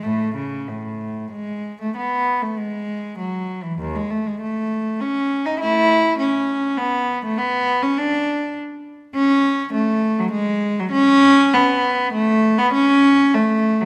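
Radiant and serene, this brief cut from a longer baroque-style suite movement for unaccompanied cello moves at 100 BPM in 3/4 with a rubato feel, settling into A major from 9.1 seconds, as a single bowed cello with a reedy gut-string, period-style tone sits close and up front, ranging from D#2 to E4 within a wet recital-hall reverb.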